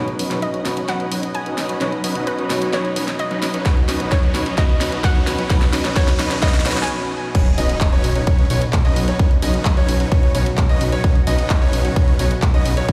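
Heard through a big sound system in a bare stone room with light digital ambience, this triumphant, euphoric festival progressive house excerpt opens on a build-up of bright, detuned supersaw chords under a filter sweep. Beneath them sit a very quiet lush pad, a clear baby grand piano with vintage 12-bit sampler grit, sidechain pumping and delay, a bouncy, hollow square pluck melody with chorus and delay, and a pop drum kit with a fat snare playing a fill, while a punchy, overdriven electronic kick arrives up front at 3.7 s and a faint riser builds underneath. After a brief stop, the drop lands at 7.3 s with an impact, as a warm grand piano takes up short-sustain arpeggios and a thick, nasal, saturated analog bass pumps up front in the mix.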